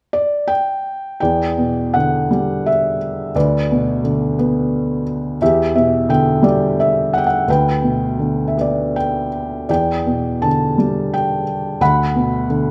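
A felt-muted upright piano plays alone from 0.1 seconds in this lyrical classical solo piece in E minor, moving in a rubato 3/4 at roughly 80-89 BPM with a bittersweet, cool mood. The piano sits up front with a boxy, intimate tone and audible action noise, ranging from D2 to B5 under light reverb. From 1.2 seconds the harmony moves through Em7, Bm/D, Em7, G/D and Em7 before settling on D6 as the fragment cuts off at 12.7 seconds.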